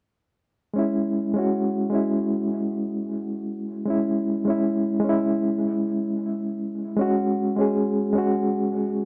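Smoky and dark, this short trip hop excerpt at 77 BPM in C# minor sets a reedy electric piano up front from 0.7 seconds, lightly overdriven through its built-in speakers with tremolo, tape echo and a low-pass filter sweep, over a C#m chord in a gritty, dry recording with light reverb.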